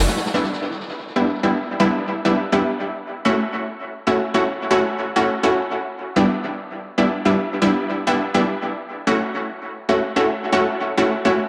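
Dark and frenetic, this short cut from a longer drum and bass piece in E dorian at 165 BPM features a single bold, punchy orchestra-hit-like synth stab, layered and detuned with a sawtooth bite and noisy top, sitting bright and up front from 0.3 to 11.4 seconds as it alternates between Em7 and F#m7, drenched in dub echo and a long, wet spring reverb.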